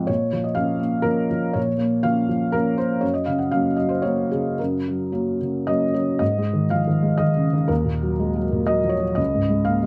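A felt-muted upright piano plays alone in this brief, intimate and wistful neoclassical minimalist passage cut from a longer piece, its soft, mellow tone thickened by heavy felt and edged with audible action noise, moving in a rubato 3/4 through a shift to a new section at 6.2 seconds, captured up front by close, detailed microphones in a dry room.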